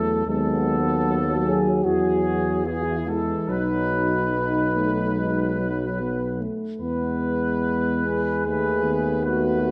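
Recorded close and detailed in a moderate scoring-stage reverb, this lyrical, hymn-like classical brass band excerpt moves at a rubato 67-80 BPM in 4/4. A clear trumpet section up front carries the melody with light vibrato over mellow euphonium, trombone and French horn section parts, with the horns adding a second line from 0.3 s and the euphonium and trombone set back. A warm, roomy tuba anchors the bass as the harmony passes from B7/D# through E and B.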